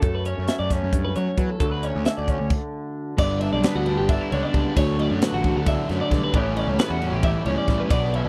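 An up-front fusion drum kit with a high-tuned snare and punchy kick drives this bright, wistful math rock and midwest emo fragment in 7/8, joined by a fuzz-laden picked bass, a clean, twangy fingered guitar bathed in lush chorus and a compressed twelve-string tracing arpeggios over F#m7 and Dmaj7, pausing for a stop at 2.5 seconds before a double-tracked, crunchy overdriven guitar riff enters at 3.2 seconds over G6 and A9, all captured in a dry, close 1970s-style studio sound.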